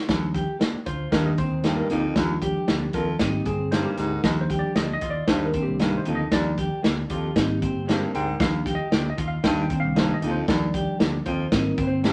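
A worn, barky tine electric piano takes the solo in this joyful, danceable 1960s-style soul passage cut from a longer piece, its slightly out-of-tune tone lightly overdriven through a combo amp and colored by phaser. Beneath it, a breathy, whispered baritone saxophone plays an intimate jazz-style riff with scooped notes and vibrato, while a round, dark picked bass and an up-front acoustic drum kit with a punchy kick and a medium-tuned snare drive the straight groove. A clean electric guitar adds a picked riff from 0.3 s, a bright, twangy guitar through a small old amp adds vibrato-treated stabs in the background from 0.6 s, and a wet studio reverb surrounds the band as Ebmaj7, Abmaj7 and Cm7 chords cycle.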